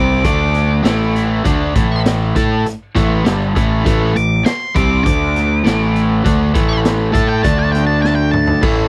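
A double-tracked, compressed overdriven electric guitar riff sits up front in this smoky, heavy blues rock power-trio piece with a southern rock lean, moving at 100 BPM in A minor between D5, Am and A5 chords, joined by a growly, bright fuzz-picked bass, a dark, distorted octave-fuzz lead guitar melody with slapback echo high above, and a boomy, saturated garage drum kit with a rolled-off top that enters at 0.2 s and plays a fill at 8.0 s, captured in a dry, close 1970s-style studio sound.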